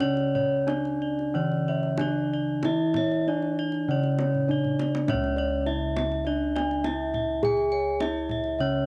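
Stately and hypnotic, this short cut from a longer Javanese gamelan piece moves at a tempo between 87 and 103 BPM in a straight 4/4. Up front, a bronze metallophone struck with a wooden mallet carries the melody with a ringing tone. Beneath it, a second metallophone played with padded disc mallets gives a mellow, soft accompaniment until 5.1 seconds, while a third, bright under a horn mallet, spins arpeggios high above. Bossed gongs with padded beaters add round, beating tones in two roles: one set sits mid-forward with arpeggios in the same upper register, while the other holds the bass further back. The kendang keeps a tight, vintage, band-limited pulse, closing the opening section with a fill from 4.3 to 5.1 seconds before the second section begins. Light reverb and the soft haze of a home cassette recording give the metallophones and upper gongs a lo-fi cast.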